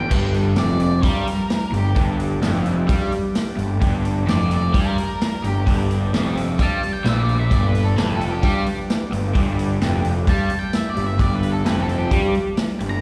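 An up-front, double-tracked overdriven semi-hollow guitar drives a dark, phased low riff through this raunchy 130 BPM blues rock and southern rock cut in G mixolydian, alongside a growly, fuzzed picked bass, a punchy vintage drum kit with dark cymbals, an octave-fuzz lead guitar carrying the melody through slapback and tape echo, and a very quiet, gritty tonewheel organ holding sustained chords through a slow rotary speaker, all heard as a live gig through the venue's PA in a recital-hall reverb across this 13-second section taken from a longer piece.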